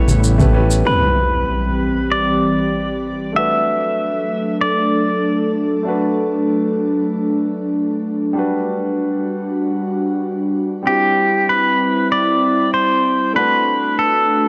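A straight 4/4 pulse at 96 BPM opens this blissful sunset chillout excerpt, though the rhythm section is fleeting: a punchy fretless electric bass on A1, a deep electronic kick, a filtered shaker and very quiet, bright congas sound only within the first second. An electronic impact arrives at 0.9 s as the harmony moves from A9 through Cmaj7, Bm7 and Gmaj7. Holding the bed throughout are an airy, breathy pad with a slow attack, long release and chorus, and a polished grand piano coloured by vintage 12-bit sampler grit, analog delay and shimmer reverb. Up front, a twangy, clean pedal steel guitar carries the melody with fingerpicked slide phrases and volume swells, trailing analog delay and shimmer reverb; it rests from 5.5 s and returns at 10.9 s. The mix sits in a lush hall ambience with a dry, gritty hardware character.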